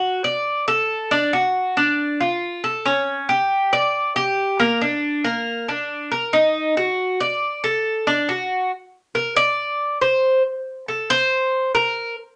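Sultry and warm, this short Latin excerpt moves at a brisk 138 BPM in a straight 4/4 feel. A lone Cuban tres carries everything from the first moment to 12.2 seconds, playing between Bb3 and D5. Its acoustic, picked double strings ring with a metallic edge, and some courses are octave-doubled, which gives the sound a shimmering fullness. The instrument sits up front in a studio space with a noticeably wet reverb that adds a sense of room. At 8.7 seconds the music shifts into a new section, where the tres takes a featured solo turn.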